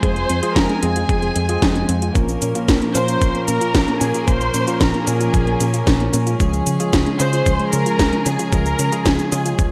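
A gritty, thumpy electronic kick drives this romantic, playful italo disco excerpt, joined up front by an overdriven house kit with a cracking snare, metallic hats and cabasa in gated reverb, over a fingered electric bass whose envelope filter gives it a warm bite. Above them, a dark, lush violin section carries the melody with expressive vibrato, portamento and digital delay, floating over sul tasto string chords as the harmony moves from Fm to Bbm to Db. In the background, a round, warbling pluck spins chorused, delayed arpeggios while a bell-like tine electric piano adds clean stabs, all set in a bright 1980s-style digital production with moderate plate reverb.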